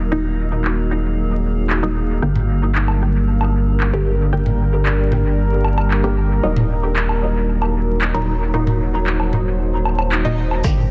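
Cavernous and deep, this dub techno passage, cut from a longer piece, moves at 114 BPM in a straight 4/4, cycling through Ebm, Gm and back to Ebm. A round, sine-like sub bass sits up front with tube saturation, while a moody, detuned sawtooth pad holds dark sustained chords through chorus and its own reverb, both breathing with sidechain pumping. In the background an eerie, warbling FM drone adds a metallic, inharmonic shimmer, and muted, plucky chord stabs run under a filter sweep, colored by phaser and dub echo. Dry, tape-warm electronic handclaps enter at 0.6 seconds, analog toms and woodblock join at 2.4 seconds, and a punchy, layered kick arrives with a grainy, mellow shekere only at 10.6 seconds. Vinyl crackle and light reverb frame a dense, heavily limited master that feels deep and cavernous.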